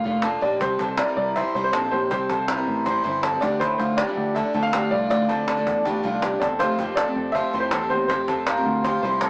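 A rough rehearsal-room recording with saturated, small-speaker character and a wet booth ambience frames this breezy, bright stretch of jangly indie pop at 160 BPM in 4/4, cut from a longer piece. A slightly broken-up electric guitar through a small old amp sits up front with dark, compressed arpeggios bathed in spring reverb, while an intimate upright piano with audible action noise and a faintly detuned, woody tone carries the melody. Underneath, a full-bodied dreadnought acoustic guitar picks the accompaniment, a foam-muted vintage electric bass gives round, punchy low notes, and a cajon with faint snares keeps time as the harmony moves from Bb through C and Dmadd9 to Fadd9.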